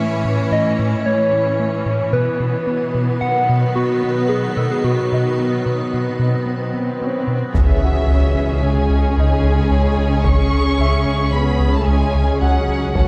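Relentless and brooding, this cinematic hybrid orchestral and electronic film score moves at 111 BPM in 5/4 in C# minor, opening with a gentle, warbling FM synth lead carrying the melody over a lush viola section, an evolving, detuned wavetable pad, a round analog bass riff, a focused cello section and a very quiet, clear baby grand piano. A quiet electronic swell rises from 6.4 s into an impact at 7.5 s, where expressive violin sections take over the melody and a second line. They are joined by a background French horn section, a very quiet trombone section, a thick saturated sub bass, a woody double bass section and compressed taiko drums played with heavy sticks. The dark production sits in a moderate scoring-stage reverb.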